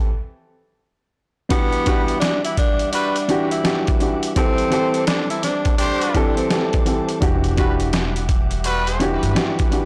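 A dark, woody upright piano opens this moody, gritty boom-bap hip-hop excerpt alone in a brief break. At 1.5 seconds a compressed, pitched-down sampler-style drum kit drops in up front with a thumpy kick, medium-tuned snare and hi-hat over a swung sixteenth-note feel. Joining it, a breathy tenor saxophone with vibrato and scooped notes carries a jazz-style solo line through tape echo, while a soft, flute-like tonewheel organ with key click and percussive third harmonic sits in the background through a fast rotary speaker. A mellow trumpet section adds punchy, lightly vibrato pop-style stabs, also touched by tape echo, as the chords move from Em9 to D7sus4/E and back. Late in the excerpt, from 7.2 seconds, a pizzicato upright bass with steel strings and transformer saturation enters, and the whole recording has a blown-out, overdriven character in a light studio reverb.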